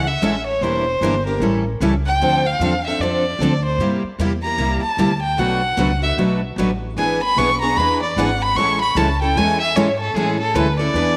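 A rich, boxy bowed violin sits up front in this charming, playful stretch of jazz manouche in A major, carrying a solo from 0.0 to 11.2 seconds with expressive vibrato and portamento. Two picked steel-string acoustic guitars supply the accompaniment at a swung 151 BPM in 4/4. One guitar has a warm, auditorium body and the other a brighter, concert tone. An upright bass plays pizzicato underneath with a woody, dark sound. The harmony moves from Amaj7 through Em7b5, A7, Dm7, C9, Bm7 and E7 before settling back on Amaj7, and a moderate plate reverb gives the recording a sense of space. The passage is cut from a longer piece.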